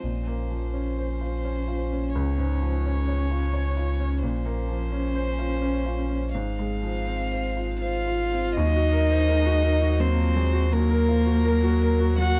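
Dry, dark and close-sounding, this melancholic, reflective neoclassical fragment in Bb minor drifts in a rubato 3/4 at 78-88 BPM, with a rich, intimate solo violin carrying the melody on an airy sul tasto bow, a warm cello tracing a second line with light vibrato and soft attack, a bright, brilliant baby grand piano accompanying, and a deep, clean sine sub bass sitting up front, while a dusky solo viola slips in quietly behind them at 8.6 seconds as the harmony turns to Ebmadd9.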